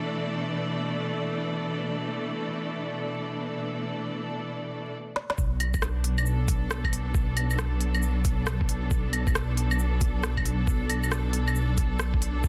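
Lush, bowed strings with vibrato open this wistful, melancholic future garage excerpt on sustained, pumping chords, and a drum fill at 5.2 seconds ushers in a swung organic kit of claves, rim click, shaker, crisp hats and a woody snare, joined at 5.4 seconds by a muffled, thumpy kick and a deep, rumbling detuned saw bass that also pumps, set in light digital reverb with vinyl crackle over a dense, heavily limited master.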